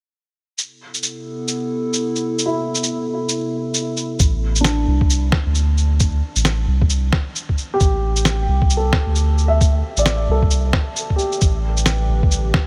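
Rainy and wistful, this future garage excerpt opens as a warbling, detuned lo-fi pad fades in over muffled, pitched-down shaker and snare, then a dark, woody upright piano enters at 2.5 seconds with digital delay, and from 4.2 seconds a deep, round dub sub bass with tube saturation joins a thumpy, compressed kick, while the pad, piano and bass pump under sidechain, all within a light reverb.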